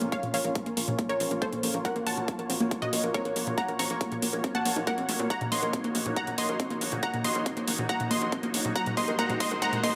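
This uplifting trance passage at 139 BPM in 4/4 opens in a build-up, with an evolving, detuned supersaw swell holding soft-attack chords while a bright unison pluck runs arpeggios through flanger and delay. A tight sawtooth sequencer bass sits mellow in the background, and metallic electronic hi-hats tick along, with sidechain pumping giving the pads, plucks, bass and hats a breathing push. Almost at once a second lush unison pluck carries the soaring melody, its short-decay notes shaped by a moving notch and trailed by delay, over a punchy, layered kick. The harmony moves from Bbm to Gbmaj7/Bb, Ebm7/Bb and Cm7b5/Bb over a held Bb, lending the lift a bittersweet edge. A drum fill starts at 5.3 seconds, and a very quiet riser enters at 6.8 seconds, all set in a lush digital hall that keeps the sound spacious.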